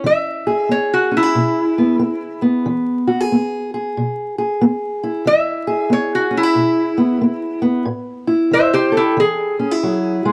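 A lap resonator guitar, metallic and nasal, played with fingerpicks and a steel bar, takes an up-front slide melody throughout this laid-back, rollicking acoustic country blues excerpt at 92 BPM with a swung feel, over a dark, boxy fingerpicked parlour steel-string guitar moving from E to A5 at 7.9 seconds and back to E, all captured in a dry, close 1970s-style small room with vinyl crackle.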